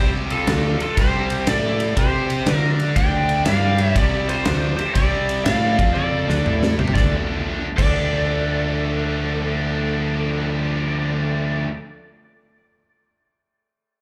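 Blues rock power trio with a southern rock edge in D minor at 120 BPM with a swung feel, this heavy, gritty excerpt from a live club gig sets an overdriven slide guitar melody over a biting lead guitar line in the background, a tight, double-tracked distorted riff guitar and a growly, up-front fuzz bass, while a huge arena drum kit with a fat snare, punchy kick and bright cymbals plays from 0.3 s, fills from 6.0 s into the next section at 7.0 s and stops at 7.9 s.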